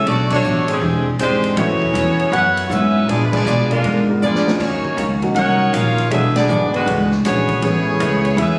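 A short, brassy cut from a big band swing number opens with the saxophone section carrying the melody up front, its tone warm with vibrato and a soft attack, while a clear trombone section plays a second line in the background and a woody, growly pizzicato upright bass sits prominently underneath. A dark, clean hollow-body electric guitar adds very quiet picked accompaniment. A distant, roomy drum kit with a boomy kick, medium-tuned snare, hi-hat, ride and crash cymbals drives the energetic swing feel. A grand piano joins the accompaniment in the background at 1.6 seconds, and the whole band hits accents together, with a brief drum fill at 4.2 seconds. The harmony moves through colorful altered and extended jazz chords, and the sound has the reverberant ambience of a club, as if captured on a phone in the room.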